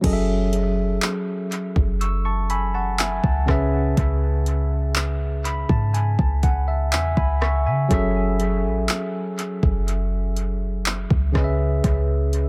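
Contemporary R&B with a late-night, longing mood, this short cut from a longer piece moves at a slow, straight pulse over an F#m7 to C#m7 progression. A clean tine electric piano heard through built-in speakers carries the accompaniment with dub echo, adding a fill between 5.0 and 7.9 seconds, while a deep, boomy 808-style bass with a sine tone, a fast attack and a decaying tail sits up front beneath it. The electronic drum kit brings a soft kick, handclaps, rim clicks, crash and warm hats, overdriven and re-recorded in a small room with its own dub echo, in a dry but echo-heavy mix.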